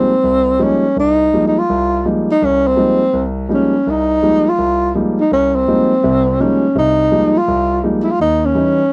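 A dry, close 1970s-style studio sound with a short booth ambience frames this cool, searching swing jazz fragment in F minor at 166 BPM, where an up-front breathy tenor saxophone carries the melody with whispered subtone, vibrato, soft attacks and scooped notes while a clear concert grand piano with deep bass accompanies over Fm11 before an Eb7b9 arrives at 8.2 seconds.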